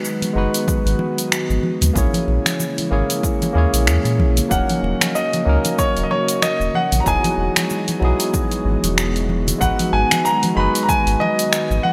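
Sunset chillout in G# minor at 94 BPM, this relaxed, warm excerpt from a longer piece moves at an easy 4/4 with a light swing on the sixteenths. A barky tine electric piano, clean and up front through a combo amp, carries the chords through digital delay and shimmer reverb, while an airy, breathy pad with a slow attack and long release sits in the background, thickened by chorus. The deep house kit of cabasa, finger snaps and hi-hat is overdriven and up front, with gated reverb, joined by a punchy, overdriven electronic kick from 0.7 seconds and damped, soft-handed congas tucked behind. A round, sine-like sub bass anchors the low end up front. At 4.5 seconds a brilliant, intimate grand piano enters with the melody, its action noise audible and its long sustain trailing into delay and shimmer, while the harmony, having moved from G#m7 to A#m7b5, continues through D#m7 and Emaj9 before returning home, all set in a lush hall with a bright 1980s-style digital sheen.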